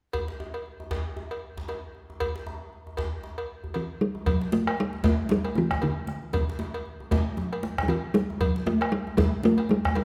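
A reverberant recital hall frames this festive, earthy West African drum ensemble, cut from a longer piece and moving at 116 BPM in 4/4 with a loose swing on the sixteenths. From the opening moments a metallic, close cowbell and a tight, cracking djembe, played with hard hands and set distant in a large room, lay down the percussion bed. At 3.8 seconds a resonant talking drum arrives, close, dry and up front, carrying the melody between D3 and A3 and standing clearly above the other drums. At 4.3 seconds the music moves into a new section as a round, vintage-toned bombo with a band-limited character adds low weight. Bright, medium-tuned congas with thin skins enter at the same moment, played with soft hands in a live room.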